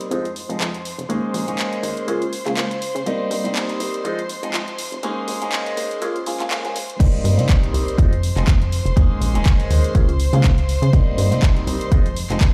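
Heard on a big sound system in a bare room with large studio reverb and digital ambience, this funky, sensual filtered disco house excerpt swings its sixteenths as a brilliant concert grand piano with phaser accompanies and a rich, vibrato-laden chamber violin section holds the chords over a plucky, wave-folded analog bass and an overdriven house kit of handclaps, bright hats and crash; the piano, violins, bass, hats and crash all pump through a filter-swept build-up until a punchy, tape-warm electronic kick lands up front on the drop at 7.0 s.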